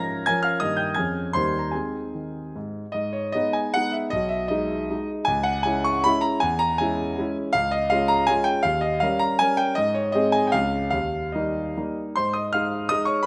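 Dotted rhythms drive this romantic triple-time dance in 3/4, pushed and pulled with rubato between 136 and 185 BPM, carrying a proud, rustic mood through a short passage cut from a longer piece. A solo concert grand piano, natural in tone with a deep bass and sitting up front, spans B1 to Bb6. Chords shift from G# minor into Ab major at 7.5 s, captured by close, detailed microphones in light reverb.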